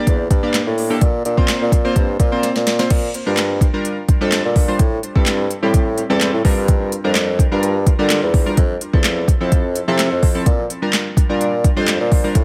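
Chorused retro synth keys open this dance-pop excerpt, glossy and full-bodied, blending pulse and sawtooth tones with a sub octave, a filter sweep and a fast, decaying attack, all pumping against the beat with an analog delay trailing behind. A moment later, at 0.1 seconds, a clear bassoon takes the bass line in a classical style with light vibrato, sitting up front and pumping along with the keys. An electronic R&B drum kit drives the straight 4/4 at 127 BPM with a soft kick, sharp snare, crisp hats, handclaps and crash, its overdrive adding grit, and a fill at 2.4 seconds leads into a new section. The harmony moves from Gm and Bbsus2 through Bb6, Am7, Gm7 and Fmaj7, giving the energetic groove a bittersweet tint. Light reverb and digital ambience leave the mix echo-heavy.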